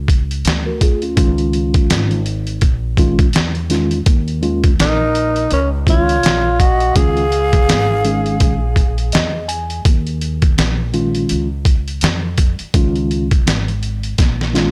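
Jazz-hop excerpt at 83 BPM with a smoky, mellow swing, built on a compressed, pitched-down sampler-style drum kit with a thumpy kick up front, a woody pizzicato upright bass and a clean tine electric piano through its built-in speakers drifting between Eb9sus4 and Dbadd9, while a growling, raspy tenor saxophone with subtone and scooped notes carries the melody from 4.8 to 9.1 seconds, joined by a breathy concert flute second line, in a dry, gritty small room.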